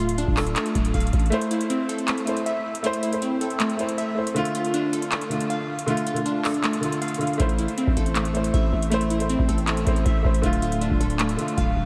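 A glassy wavetable pluck opens this brooding, hard-hitting trap excerpt in A minor, spinning arpeggios over a growling 808-style bass and a booming analog drum machine at 158 BPM in a half-time feel. The pluck is crystalline and detuned, shaped by chorus, delay and a low-pass filter. The drums sit up front with a deep kick, metallic hi-hats and handclaps, carrying a tape-warm, small-room character. At 1.3 seconds the buzzy bass and the kick drop away as a dark, mellow baby grand piano enters through a low-pass filter. The bass and kick return at 7.4 seconds, while the harmony moves between Dm and Am. The whole dreamy mix is soaked in a huge ambient reverb.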